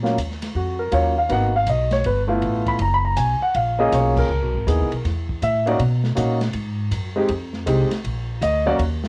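Jazz piano trio in Eb minor swinging at 160 BPM with a cool, smoky mood, where an up-front concert grand with deep bass carries the melody through chords such as Ebm9 and Gbmaj7, a woody pizzicato upright bass on steel strings anchors the low end, and a smooth jazz kit with dark cymbals, a medium-tuned snare and a boomy kick sits further back in a small booth, the piano and drums both tinted by cassette tape, with a band accent at 4.1 seconds in this brief cut from a longer piece.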